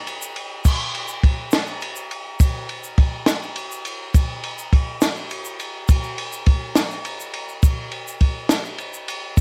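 Folk in a straight 6/8, this wistful, bittersweet excerpt pairs a compact cocktail drum kit, dry and up front with its punchy kick, high-tuned snare and dark crash and ride cymbals colored by cassette tape, with a grainy, bright egg shaker tucked close in the background, all caught in a home recording on cassette with light reverb.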